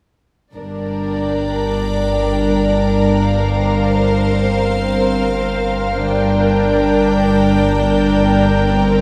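Cinematic and tense in free time and G minor, this string passage opens with a dark, intimate double bass section on a low G at 0.5 seconds, soon joined by warm cello and viola sections, a dark second violin line and a floating, pure upper violin melody, all bowed sul tasto with soft attacks. A deep, ominous drone rumbles beneath with phaser and reverb from 1.1 seconds, and a soft organ-like pad with ensemble chorus adds bright, detuned sustained chords from 1.2 seconds. The harmony moves from Gm to C7sus4/G and back, all set in a wet scoring-stage reverb heard from further back in the room.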